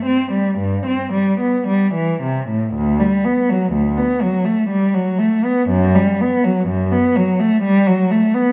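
A lone bowed cello opens this brief excerpt of a baroque-style suite movement in D major, its rich, expressive tone shaped by vibrato, soft attacks and gliding portamento as it moves between D2 and C4. The serene, dance-like 3/4 phrase unfolds with a rubato feel at around 54-64 BPM, and its opening idea returns at 2.7 seconds. The solo player sits up front within a moderate scoring-stage reverb of 1.8 seconds, tuned to A4 = 442 Hz.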